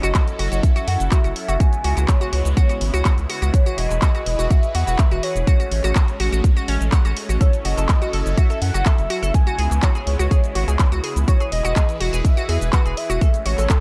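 A punchy, up-front electronic kick drives this bittersweet, emotional progressive house excerpt alongside a deep, round analog bass with sidechain pumping, handclaps, hi-hat and shaker from a layered pop drum kit, crystalline wavetable pluck arpeggios with phaser and delay, an evolving, detuned supersaw holding sustained chords, and a velvety synth lead carrying the melody with chorus and vibrato over a looping F#m7, C#m7, E, Amaj7 progression in a dry, close mix.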